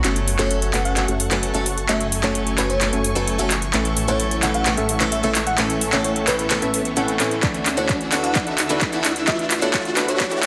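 Anthemic and euphoric, this 130 BPM festival progressive house excerpt is a build-up in which a punchy, airy supersaw stab riff with a filter sweep and delay pumps over a thick, menacing detuned saw bass, a boxy picked acoustic archtop guitar with finger squeak, lush background strings and a sparkling bell-like FM electric piano melody from 0.4 s, while an up-front big-room drum kit with metallic hats and handclaps plays a fill, a very quiet riser swells beneath, and a layered electronic kick drops in at 7.4 s as the chords move from F#m through A to Dadd9 inside a dense, heavily limited master with hall reverb.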